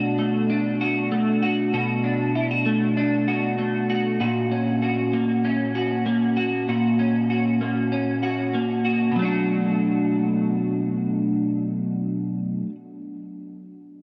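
Melancholic and haunting, this dream pop piece, cut from a longer work, moves at 97 BPM in a straight 4/4 in B minor, tuned to A4 = 438 Hz. A lone electric guitar at the edge of break-up plays from the start to 12.7 s, its picked, twangy tone compressed and placed up front, colored by analog chorus and digital delay as it moves from Bm7 to F#/A# at 4.2 s and back to Bm7 at 9.2 s. A huge, wet ambient reverb with a long tail surrounds it in a dark, warm production.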